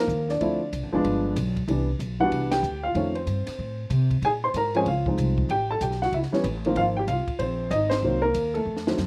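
A dark, mellow upright piano carries the melody up front in this relaxed, playful swinging jazz piano trio at 189 BPM, over a thumpy, woody pizzicato upright bass on gut strings and a compact cocktail drum kit with a high-tuned snare, punchy kick and dark cymbals, moving through changes from Dm7 and G7b9 to Cmaj9 in a dry, close sound, with band accents at 2.5 and 7.9 seconds and a short drum fill at 8.7 seconds closing this excerpt of a longer piece.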